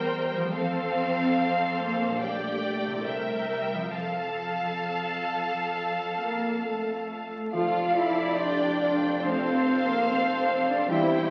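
Heard through the crackle of a very old 78 rpm record and a recital hall's reverb, this lyrical, serene classical passage in F major moves in a rubato 4/4 at around 64-74 BPM. A clear, up-front violin section carries the melody over a rich, smooth-topped second violin line, with distant, lush violas, ringing fingerpicked harp arpeggios, and a background bass of cellos and double basses. At 6.2 seconds an airy, crisp flute section adds a second line as dark French horns sustain chords, and from 7.5 seconds warm trombones and a mellow tuba join them underneath.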